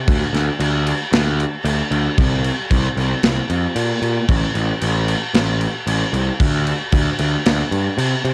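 Heavy metal cut from a longer piece, dark and relentless in a half-time straight 4/4 feel, where a bright, growly fuzz-picked electric bass with overdrive and a polished, airy studio drum kit with punchy kick, medium-tuned snare and crash cymbal both sit up front from 0.1 to 8.3 seconds in a dry home recording on cassette.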